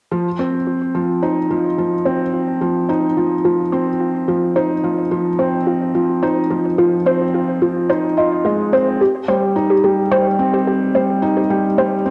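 Tender and luminous, this short excerpt of piano and strings electronica moves at 108 BPM in a straight 4/4, sitting in Ab major with tuning at A4 = 441 Hz. A felt-muted upright piano carries a riff between F3 and F4, sitting up front with a soft, intimate tone, thin felt and audible action noise, coloured by cassette tape and tape echo. Alongside it, a warbly, dusty pluck plays arpeggios from F4 to Eb5; its sawtooth and triangle sound, with a noise layer, ring modulation and a filter sweep, has a fast attack, a decaying tail and a lo-fi, chorused haze on top of its own tape echo and cassette colour. The harmony rests on a rootless Ab6 before turning to C minor at 9.0 seconds, and the pluck drops out at 11.8 seconds while the piano carries on a moment longer. A wet spring reverb and small room ambience frame this home cassette recording, which is cut from a longer piece.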